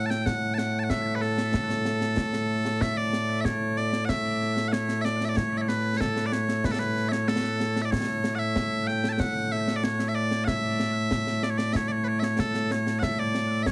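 Heavily compressed, radio-like sound in a small, reverberant room frames this stirring, ceremonial Scottish pipe music at 94 BPM in a straight 4/4 in A major, where loud, piercing bagpipes with tape echo carry a continuous solo melody up front while concert snare and bass drum, close and dry with bright cymbals, join at 0.1 s in this short cut from a longer piece.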